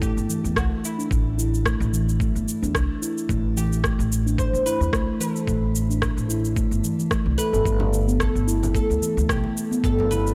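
A round, pure steel tongue drum stands up front in this meditative, hypnotic organic downtempo piece, playing arpeggios played with rubber mallets in a boxy small room and echoed by analog delay. Beneath it sits an up-front, dark, woody pizzicato upright bass on steel strings, its sidechain pumping giving the low end a breathing pulse. A bright, fretless oud with double strings plays the melody with a plectrum, treated with analog delay and shimmer reverb. At 110 BPM in 4/4 with a light swing on the 16ths, a thumpy, overdriven, sampler-style kick and a produced electronic shaker and rim click keep the groove steady. The harmony sits on A5 in A minor, tuned to A4 = 438 Hz, before moving to Gadd9 at 7.7 s, and at 7.8 s ringing, hard-handed congas slip in at the back. The whole cut carries a dry, gritty hardware character with only light small room reverb.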